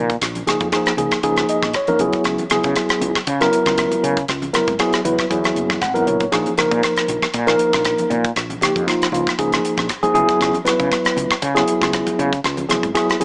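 Slick and nocturnal, this electric jazz fusion piece moves at 118 BPM in 4/4 with a light sixteenth-note swing, as an up-front, mellow tine electric piano accompanies over Bbm7 and Dbm7 chords and adds short fills at 1.2 and 5.6 seconds, a dark, growly, round woody fretless bass sits underneath, a tight, dry, polished funk kit of hi-hat, kick and rim click keeps time, and low-tuned, thick-skinned congas enter at 0.4 seconds in the background, the whole mix set in a large studio reverb with a small-speaker character.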